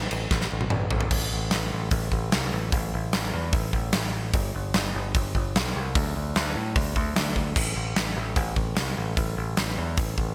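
Aggressive and heavy, this hard rock excerpt drives at 149 BPM in a straight 4/4, with a picked electric bass playing low and direct from the opening instant while a huge arena drum kit joins at 0.1 seconds and throws in a fill that runs to 1.1 seconds. The kit sits up front in a hall sound, its bright cymbals ringing over a medium-tuned snare and a punchy kick, and the warm bass is equally forward, both parts carrying on together until the cut at 10.3 seconds. Light reverb and a bright 1980s-style digital production frame the pair.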